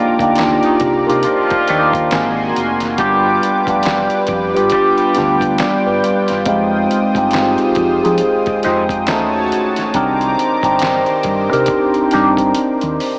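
Soaked in a huge ambient reverb and heard as if through a small speaker, this dreamy, sultry neo-soul piece in C minor moves at a slow 69 BPM with a 16th-note swing. A clean, up-front tine electric piano with phaser carries the chords over a smooth, detuned sawtooth pad with chorus, while a tight vintage horn section adds stabs until 5.5 seconds. A dark, round fingered bass sits low under a gritty, compressed sampler-style kit of thumpy kick, snare, hi-hat and handclaps, and a slightly broken-up guitar with wah picks a second line in the background, returning at 8.2 seconds before a drum fill at 12.5 seconds.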